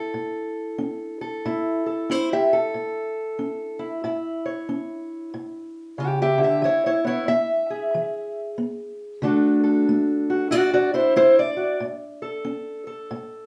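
A dark, boxy parlour-style steel-string acoustic guitar, fingerpicked and up front, carries this laid-back, soulful acoustic country blues on its own from 0.0 to 13.5 seconds, ranging from A2 to E5. At 93 BPM in 4/4 with a swung eighth-note feel, it moves through A, E, D and back to A, arriving on E at 6.6 seconds. A wet studio reverb with a 0.6-second decay gives the short fragment a roomy, slightly distant setting.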